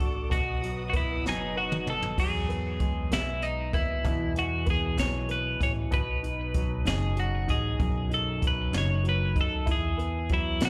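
Heard live through a club PA, this heartfelt, swaying six-eight pop ballad excerpt sets a bright, twangy, up-front twelve-string electric guitar melody with slapback echo and delay over polished concert grand piano accompaniment that carries its own slapback echo, a woody pizzicato upright bass and a brushed jazz kit with a boomy kick and high-tuned snare, while a lush bowed string section sits in the background until 2.2 s, the point where a drum fill starting at 1.2 s leads into the next section.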